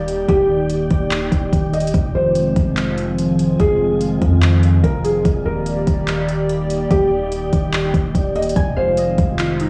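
Floating and blissful, this atmospheric cloud-rap excerpt in a half-time feel sets a muted, intimate felt piano melody with analog delay over a hollow, flute-like pad that pumps with sidechain and chorus, a deep, mellow sine 808 bass, a soft, tape-warm R&B kit of kick, hi-hat and handclaps, and a breathy wind-like noise texture in the background, while a ringing concert harp adds delayed arpeggios from 8.6 seconds, all within a gritty cassette-tinged recording.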